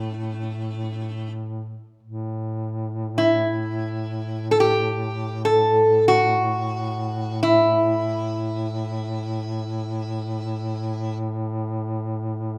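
Caucasian folk in free time, this short excerpt carries a longing, mournful mood. A metal-body resonator slide guitar takes the melody, its acoustic tone bright, metallic and nasal as fingerpicks and slide draw out lines up front in the mix. Beneath it, a warm duduk holds a low drone, sung in folk style with vibrato and scooped notes, also sitting up front. The guitar falls silent at 11.2 seconds, leaving the duduk to sustain its drone alone until 12.6 seconds. A moderate recital hall reverb surrounds both instruments, lending the sparse pairing a sense of space.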